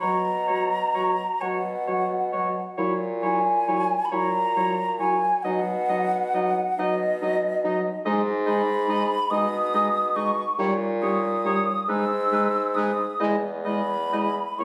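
A slow, yearning, solemn romantic movement for wind quintet opens with all five players together, moving in a gently rubato lilt of six. The hollow, pure-toned flute sings the melody up front with vibrato and tongued notes, while a clear, lightly vibrato oboe carries a distant, roomy second line beneath it. A mellow French horn, close-miked and touched with vibrato, and a soft-attacked clarinet in the background fill out the accompaniment, as a warm, vintage-sounding bassoon anchors the bass up front. The harmony moves into G# minor at 8.1 s, and the passage closes on a major seventh chord at 13.2 s. Heard through a phone placed in a reverberant recital hall, the sound is wet and spacious, and the music is cut from a longer piece, breaking off at 14.6 s.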